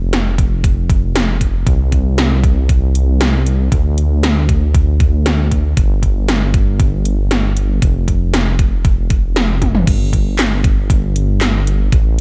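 A digital ambience frames this short synthwave passage, cut from a longer piece, with all three parts placed up front in the mix. A dark detuned saw bass opens at 0.0 seconds, deep and rumbling, its beating sawtooth layers blended with a sine tone, giving a fast attack and long sustain in the low register. Eighties-style electronic drums arrive almost immediately, with a gated snare, metallic hi-hats, handclaps, toms and crash cymbal carrying an analog, tape-tinged character and gated reverb on the snare and toms. A sampler-style electronic kick, thumpy and overdriven and re-recorded in a small room, joins at 0.4 seconds, driving a straight 4/4 pulse. A drum fill at 9.6 seconds leads into a new section at 9.9 seconds, keeping the mood uplifting and nostalgic to the end.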